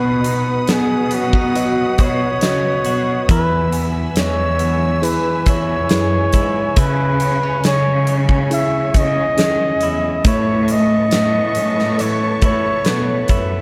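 A mellow flugelhorn carries the melody up front in this hopeful, heartfelt pop ballad, its jazz-style solo line smooth on top and shaded with vibrato. Beneath it, a worn, barky tine electric piano played through a combo amp supplies the accompaniment, sounding slightly out of tune. A lush string section holds sustained chords with an intimate, sul tasto softness, while a bowed cello section, distant and even, carries the bass. A clean electric guitar, recorded direct and compressed, picks arpeggios in the background, and an acoustic arena drum kit sits up front with a punchy kick, a medium-tuned snare and hi-hat, its hall sound pumping. The chords move from B to E, C#m and Aadd9 across this short cut from a longer piece, which otherwise carries little reverb.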